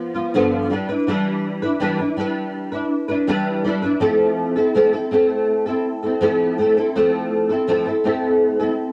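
Worn, warbling cassette tape and a wet studio reverb give this short indie pop clip a hazy, slightly wavering sound. A bright acoustic flamenco guitar plays alone and up front, fingerpicked with audible finger squeak, its tone thickened by an ensemble chorus and a drifting pitch. The mood is laid-back and sunny as the harmony moves from G7 to Em7 and settles on Fmaj7 at 4.0 seconds.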